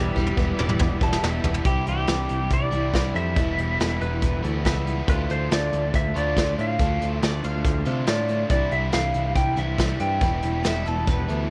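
Folk rock with a heartland rock lean at 140 BPM in a straight 4/4, this dusty, reflective excerpt sets a twangy, compressed lap steel melody with volume swells and slide over a double-tracked overdriven electric guitar riff with spring reverb, a full-bodied jumbo acoustic guitar with finger squeak in the background, a picked electric bass up front, and a soft brush drum kit with a punchy kick that opens on a fill. A barky reed electric piano with overdrive and tremolo and a very quiet tonewheel organ with key click and slow rotary speaker appear only in the first 1.6 seconds, while a bowl-back mandolin with double strings adds a second line in brief spots, returning at 7.2 and 10.7 seconds. The chords move through Em, Cadd9 and Dm in a small room ambience.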